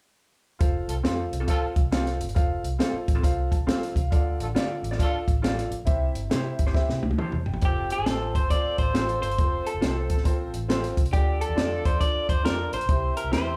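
A picked lead electric guitar through a small old amp comes up front at 7.7 seconds, its slightly broken-up, compressed tone bathed in spring reverb as it carries the melody through the rest of this joyful, uptempo 1960s-style soul excerpt. Underneath, a compact cocktail drum kit with a punchy kick and high-tuned snare drives a swung groove, its dark, rolled-off top sitting close to the listener, and it closes the first section with a fill. A foam-muted fingered electric bass gives a round, amped low end, while a woody upright piano fills in the harmony and slips in a brief fill of its own. A second guitar adds lo-fi stabs shimmering with harmonic tremolo, and a smooth-topped horn section plays a jazz-style second line in the background, appearing briefly before settling in from 4.4 seconds. The band sounds like it is playing live together in one room with light reverb, cycling through F, D minor and C in two matching passes.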